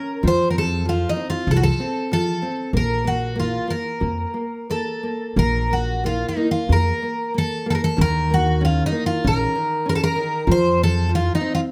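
Set in a moderate studio reverb, this short, mournful fado-style ballad in B-flat harmonic minor drifts with rubato at about 94 BPM, as a shimmering, octave-doubled twelve-string acoustic guitar carries the longing melody up front over a fingerpicked classical nylon-string guitar and a woody, pizzicato upright bass on gut strings that enters at 0.2 seconds.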